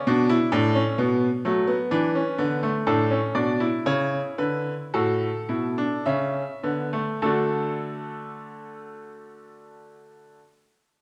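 A wet recital hall reverb surrounds this short classical fragment, giving the solo baby grand piano a spacious, lingering tail. The piano itself sounds bright and brilliant, placed up front with an open tone. Cut from a longer piece, it is a baroque-style fugue in three voices, elegant and lively in mood, with a straight pulse in four. The opening passage slows down over its first 7.2 seconds before the music moves into a new section. The piano spans from A2 up to E5 and plays until 10.4 seconds, its sound then carried on by the hall.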